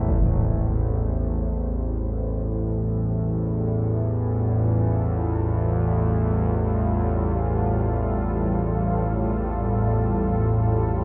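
Dark and ominous, this free-time dark ambient drone excerpt holds a single Fadd9/A chord from 0.1 seconds, with a deep, moody pad of detuned sawtooth unison and a sine sub octave sustaining mellow chords under chorus and its own built-in reverb. Beneath it, a warm, vintage analog drone of sawtooth and pulse waves warbles and evolves, shaped by pulse-width modulation, with slow attacks, long releases and chorus, both parts sitting up front in a huge ambient reverb.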